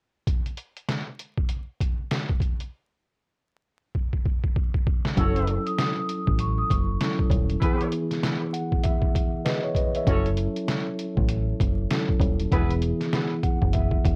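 Boom-bap hip hop with a gritty, moody cast, this short cut from a longer piece rides a swung 4/4 groove. A sampler-style drum kit opens alone, compressed and pitched down with vintage 12-bit grit, its thumpy kick, medium-tuned snare and hi-hat sitting up front, and a drum fill arrives at 4.0 seconds. The electric piano enters at 5.1 seconds and the other parts follow at 5.2 seconds over F#m7 and Emaj7 chords. A round, punchy fingered electric bass, dark and foam-muted, holds the low end, while a mellow, clean tine electric piano carries the accompaniment through its built-in speakers with a cassette-tape coloring. A soft-mallet vibraphone adds a brief metallic, ringing melody with fast motor vibrato, and a distant, roomy horn section in octave doubling punctuates with light-vibrato stabs touched by digital delay. Light reverb, worn and warbling old tape with drifting pitch, and vinyl crackle give the whole recording a weathered haze.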